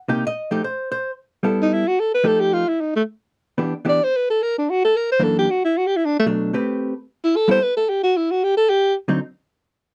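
A dry, close recording in a 1970s studio style, with a moderate booth ambience that keeps both players up front. This is a brisk swing jazz piece in G major at 224 BPM, cut from a longer performance, with a warm, sophisticated mood. A vintage hollow-body electric guitar starts the accompaniment at 0.1 s, its tone dark, clean, picked and compressed, moving through chords such as G69, F9, Em7, F#aug7 and Am9. The alto saxophone enters at 1.6 s and carries the solo melody, sounding breathy, whispered and intimate with a soft attack, a clear core and vibrato. The saxophone sits a little louder than the guitar and holds the spotlight until the guitar's final Dadd11 chord sounds before the piece breaks off.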